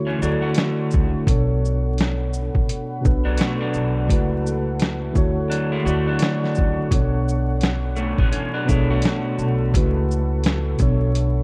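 Lo-fi hip hop at 85 BPM in B minor, reflective and melancholic, cut from a longer piece and swung on the sixteenths, with a gritty, pitched-down boom bap sampler kit of thumpy kick, medium-tuned snare, hi-hat and shaker up front beside a tine electric piano carrying cassette-tape colour. A woody pizzicato upright bass on gut strings anchors the low end while a slightly broken-up electric guitar through a small old amp adds a picked second line with analog delay until 9.7 seconds, and a deep, dark detuned pad holds sustained chords with chorus underneath. The harmony moves through Dmaj7, Bm7 and A6/C#, all wrapped in light reverb and vinyl crackle, with a break at 11.2 seconds.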